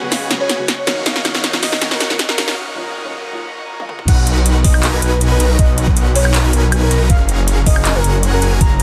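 This emotional, dreamy future bass fragment opens with a soft, round pluck sitting dark in the background, a very quiet ethereal pad, and huge, bright supersaw chords. Almost at once, a velvety synth lead carries the melody over a big-room drum kit with a punchy snare, metallic hats, claps, toms, woodblock and crash. The half-time build-up rides on a filter sweep and drum fills, the pad drops away at 2.6 seconds into a short break, and another fill arrives at 3.8 seconds. At 4.1 seconds the drop lands: the pluck stops, while a thick, detuned saw bass sits up front, joined by an overdriven, knocking electronic kick, beneath the chords and lead. The lead carries chorus, vibrato, gritty vintage sampler colour and tape echo, and sidechain pumping makes the pluck, chords, lead and bass breathe. The master is dense and heavily limited, with light reverb and lossy artefacts.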